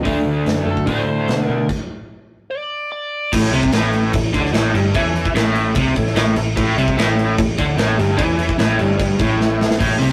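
A rough rehearsal-room recording with warm saturation and a small room's short reverb gives this raunchy, gritty excerpt of blues rock power trio and southern rock its live edge, moving at 148 BPM in a straight 4/4 in A mixolydian. A crunchy, double-tracked overdriven guitar drives the riff up front with harmonic tremolo, over a dark, round, foam-muted picked bass and a big acoustic rock kit with a punchy kick, bright cymbals and a medium-tuned snare. A bluesy lead guitar, dark and distorted through a wah, cuts in up front at 0.7 seconds and carries on through the stop the band hits from 1.7 to 3.3 seconds, with the chords moving from D to a break before landing on A. When the music settles on A at 3.3 seconds, a thick, overdriven tonewheel organ enters in the background with sustained chords, colored by slow rotary speaker and chorus vibrato. A drum fill closes the passage, and the lead guitar briefly returns at the very end.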